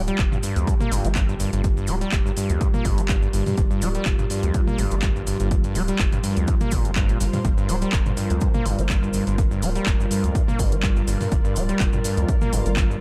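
This gritty, driving acid house piece in G minor, cut from a longer track, moves at 124 BPM in 4/4 with a light 16th-note swing, and it opens on a Gm7 chord. It starts with a dark, detuned analog pad with chorus and sidechain pumping, a round, deep analog bass that also pumps, and a faint granular cloud pad that drifts, blurred and evolving, high above. Almost at once, at 0.1 seconds, a squelchy, overdriven acid bass enters with a resonant sawtooth riff, filter sweep and tape echo, joined by a tape-warm analog drum machine playing handclaps, hi-hat and toms, plus a grainy cabasa tucked in the background. The punchy electronic kick arrives at 0.2 seconds and sits up front as the loudest element, driving the groove beneath the saturated acid line. The mix is echo-heavy with light reverb and digital ambience, giving the moody pads and percussion a murky, hypnotic depth that carries on until 13.0 seconds.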